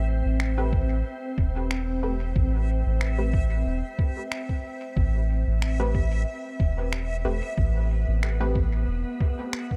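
A lightly swung 4/4 groove in ambient dub opens with pad, sub bass and reversed texture sounding together, and at 0.4 s electronic finger snaps join, tape-tinged and re-recorded in a large room, trailing dub echo. From 0.7 s a muffled, thumpy, pitched-down kick sits up front. Beneath it, a round sub bass built from triangle and square waves holds low, sustained notes until 9.0 s. A calm, warbling, organ-like pad rests on one chord throughout, its vintage detuned unison thickened by ensemble chorus and reverb, while filtered chord stabs pluck and decay in muted, sawtooth-edged bursts with chorus and echo. High above, a reversed granular texture drifts in dreamy, bright swells, giving this deep, spacious fragment of a longer piece its airy, digital ambience.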